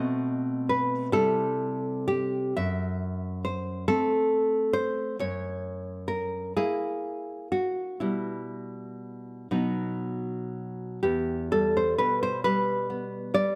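A rubato 6/8 pulse of roughly 38-47 BPM, counted in dotted quarters, carries this passionate, intimate excerpt of a romantic piece for solo classical guitar in E minor, where a warm, fingerpicked nylon-string guitar sits up front in light reverb and ranges from E2 to E5 as it moves from B7b9 through C, F#m7b5 and F#7 to Em/B and B before settling on Em at 11.0 s.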